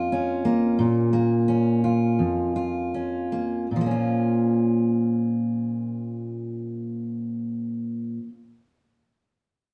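A fingerpicked steel-string acoustic guitar, jumbo-bodied and full, sits up front and carries this brief folk excerpt on its own from 0.0 to 8.4 seconds, ranging from F2 to F4 in an accompanying role. The key is Bb minor, and the piece opens on a Bbm chord, setting a yearning, bittersweet mood. In straight 4/4, the tempo moves between 76 and 91 BPM, slowing down over the first 3.7 seconds before a second section begins. A moderate stone-room reverb, with a decay of 1.3 seconds, surrounds the guitar. The sound has the rough character of a rehearsal-room recording, cut from a longer piece.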